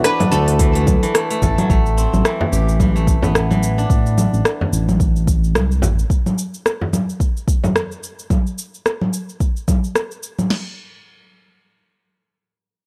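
A nasal, detuned synth bass sits up front in this meditative, hypnotic organic downtempo piece in A dorian at 109 BPM with a swung 16th feel, carrying a filter sweep from 1.7 to 6.1 s beneath a punchy, overdriven deep house kit, a crisp, tape-warm organic electronic kit of congas, hi-hat, rim click and shaker, a soft-handed frame drum, silvery fingerpicked zither arpeggios with delay, and a brief woody oud phrase with delay that opens the cut, in a dry, close sound.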